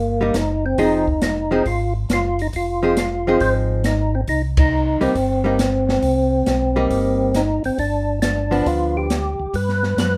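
Soul jazz organ trio in C minor at 137 BPM with a swung, soulful late-night feel, where a fat, percussive tonewheel organ with key click, chorus vibrato and slow rotary speaker carries the melody over a round, mellow organ bass line, a clean, compressed hollow-body archtop guitar comps from 0.2 seconds, and a dark, acoustic jazz kit with punchy kick and dark cymbals enters at 0.3 seconds, the band hitting an accent at 4.5 seconds as the chords move from Cm7 through Fm7 to G7 in light reverb.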